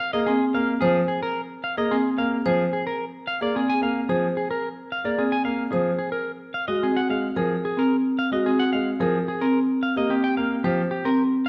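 In a straight three-beat metre, this urgent, hypnotic fragment of minimalist classical pattern music pairs up-front marimba arpeggios, woody and percussive under medium hard mallets, with a clean, picked electric guitar melody that sits forward in the mix. A brilliant concert grand piano supplies polished, long-sustaining accompaniment in a narrow register just below middle C as the harmony moves from Fm to a rootless Ebm69 at 6.5 seconds and C7(no3) at 9.8 seconds. Recital hall reverb wraps the whole in a dark, warm production.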